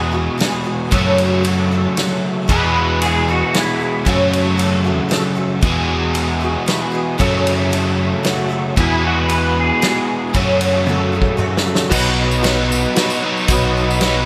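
Jangly and hopeful, this short folk rock and heartland rock excerpt in E major moves at 115 BPM in 3/4, with a bright, boxy picked acoustic guitar, a double-tracked overdriven electric guitar riff up front, a fingered electric bass and a natural small-room country drum kit with a punchy kick, while a clean pedal steel slides in around 2.5 seconds, a tonewheel organ with slow rotary vibrato joins quietly from 5.6 seconds, and a dark, woody, slightly detuned upright piano and a jingly background tambourine arrive at 11.9 seconds as the harmony shifts after a drum fill, all set in moderate plate reverb with bright 1980s-style digital production.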